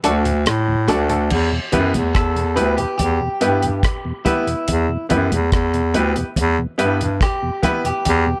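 Hypnotic and laid-back, this short roots reggae passage, cut from a longer piece, moves in a straight 4/4 from a D chord to E minor. It opens on a break of just over a second before a clean electric guitar solo takes over at 1.3 seconds, the guitar sitting at the edge of break-up, picked and compressed, with a tape echo trailing its lines. Beneath it, a mellow tonewheel organ adds round, dark tones shaded by chorus vibrato and a slow rotary speaker, while a woody upright piano with short sustain punches out stabs thickened by tube saturation. The bass line comes from a clear bass clarinet, soft in attack and classical in manner, standing up front alongside a dry, dark reggae drum kit with a tight kick, rim clicks, hi-hat and crash under a rolled-off top. High-tuned congas, played close with hard hands, join at 0.5 seconds, and a light reverb gives the whole a small-room feel.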